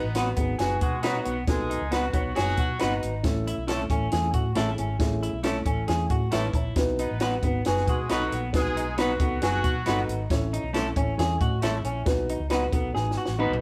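A straight 4/4 groove drives this uptempo, joyful 1960s-style soul excerpt, anchored by a compact cocktail drum kit with a punchy kick and a high-tuned snare sitting dry and up front across hi-hat, snare and toms. Beneath it, a hollow-body short-scale electric bass, played with the fingers, gives a round, dark, amped low end. An electric guitar through a small old amp repeats a slightly broken-up, compressed, lo-fi riff, while a clean, picked electric guitar punctuates with stabs. A mellow, woody upright piano with a boxy tone fills out the accompaniment and adds a short fill at 6.1 seconds. A tight, warm vintage horn section with light vibrato plays a pop-style second line in two short bursts, one at the start and another at 7.0 seconds. The harmony moves between B and A chords, the band plays live in one room with light reverb, and a drum fill at 12.9 seconds closes the passage.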